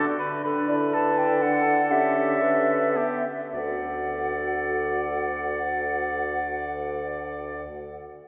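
In 3/4 at 101-124 BPM, this quick classical-period movement for wind quintet unfolds with a rubato feel, slowing down over its first 3.5 seconds. Set in D major, it sounds spirited and graceful, moving from D through A7/D and back to D as a new section begins at 3.5 seconds. A silver concert flute carries the melody from 0.7 seconds, airy and soft in attack, with expressive vibrato. Beneath it, a clear oboe with a smooth top sings the second line up front, while a mellow bassoon with light vibrato holds the bass just as prominently. A clarinet and a punchy, vintage French horn fill in the accompaniment further back, the horn lending a warm glow. A wet cathedral reverb gives the ensemble a long, resonant tail, and the passage is cut from a longer piece.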